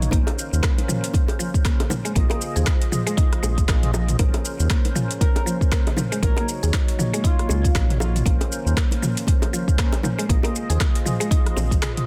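Spiritual and hypnotic, this afro house excerpt moves at 118 BPM in Bb minor with a swung sixteenth-note feel, cycling through Bbmadd9, Fm7/Bb and Ebm7/Bb chords. A deep, up-front electronic kick and a round, dark analog bass anchor the groove, the bass pumping against the kick, while a layered deep house kit adds metallic hats, handclaps, rim clicks, shaker and toms, and tight, high-tuned bongos sit in the background. A woody, mallet-like synth pluck plays bright arpeggios with chorus and tape echo, and a fat, lightly overdriven tonewheel organ punctuates with stabs colored by key click, chorus vibrato and a slow rotary speaker. Beneath them an ethereal, very quiet pad holds sustained chords with a phaser and ensemble chorus, and a smooth, expressive synth lead with vibrato, heard only briefly at the very start, returns from 5.2 to 8.3 seconds in the background. The mix is dry, dense and heavily limited, closing with a drum fill from 11.6 seconds into a break at 11.8.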